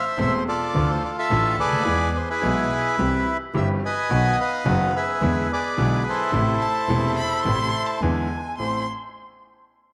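A wet spring reverb with a long tail surrounds this short, dramatic and passionate tango cut from a longer piece, moving at 107 BPM in 4/4 with a free, rubato feel in A harmonic minor. The bandoneon carries the melody from the opening moment, its reedy, dark voice placed up front. Beneath it, a vintage-toned concert grand piano supplies smooth accompaniment with deep bass, while a single bowed double bass plays sul tasto with a soft attack, giving a pure, floating low line. At 6.6 seconds a single bowed violin enters close and up front with a second line, expressive and warm, shaped by vibrato and portamento. The harmony turns from A minor through D minor with an added ninth, E, C and B toward E7 before settling back on A minor, and a brief new section opens at 8.6 seconds.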